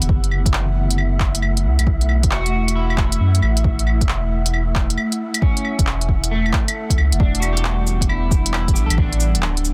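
Dense, heavily limited and nearly dry, this wistful, nocturnal future garage excerpt at 135 BPM with swung 16ths sets an ethereal, detuned pad with sidechain pumping over a round sine sub bass, a punchy layered kick and a small-room electronic kit of crisp hi-hat, cabasa, claves and handclaps, while a dark, breathy wind-like tuned noise hovers in the background and a slightly broken-up, scooped electric guitar with analog chorus and tape echo enters at 2.3 seconds, the harmony shifting from F#m7 to Em7 at 7.2 seconds.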